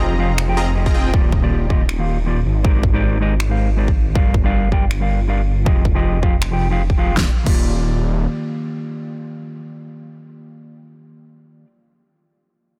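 A swung, half-time groove drives this playful, euphoric future bass excerpt, with an up-front, punchy, overdriven electronic kick from 0.9 s and a big-room dance kit adding crash cymbal, finger snaps and a huge, soft-clipped snare. A thick, chorused detuned saw bass pumps through a filter sweep until 7.2 s, a detuned sawtooth supersaw stab flashes briefly at the start, and a dark, clean, fingered electric guitar carries the chords from Fm7 to Ebmaj7 through a haze of delay. The dry mix is dense and heavily limited.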